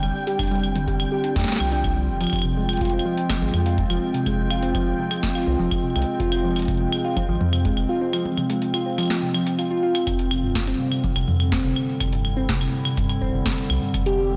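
Glitchy and melancholic, this IDM excerpt moves at 124 BPM in F melodic minor, with a harp-like synth pluck ringing up front in arpeggios through chorus, tape echo and shimmer reverb over a warbling, nostalgic pad of sustained chords and a round, nasal analog bass. A booming analog drum machine with crisp snare, metallic hats, claves and toms runs through delay, joined from 0.4 seconds by a deep, tape-toned electronic kick, while a bubbling, detuned stepped-filter texture hovers high until 10.1 seconds. The whole recording sits in a lush hall reverb and sounds blown-out and overdriven, shifting from Fmadd9 to C/F as the second section begins at 10.1 seconds.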